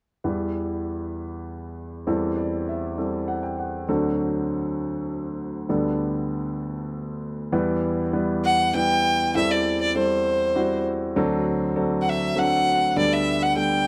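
Acoustic folk-pop ballad in E minor at 99 BPM in a straight 3/4, reflective and heartbroken in mood, cut from a longer piece. A warm, intimate concert grand piano carries the accompaniment from 0.2 s, up front with deep bass and audible action noise, cycling through Em, Am7/E, D7 and Gadd9/D. At 8.5 s a single bowed violin enters with a clear, focused melody sung out with vibrato, set close against a dark production with light reverb.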